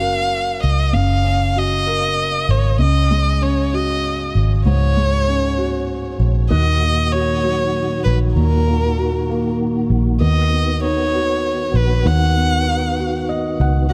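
A rich, boxy violin carries the melody up front, its single bowed line full of vibrato and portamento and trailed by a digital delay, giving this slow 6/8 pop excerpt at 65 BPM a dramatic, aching character. Beneath it, a felt-muted upright piano plays soft, intimate accompaniment with audible action noise, while a foam-muted fingered electric bass sits round and punchy in the low end as the loudest part. At 6.5 seconds a percussive tonewheel organ joins with mellow sustained chords, colored by key click, chorus vibrato and a fast rotary speaker. The harmony moves from Gb through Dbsus4 and Ebm to B, and the piano closes the passage with a short felt fill at 13.0 seconds. Light reverb and a small room ambience frame a dark production.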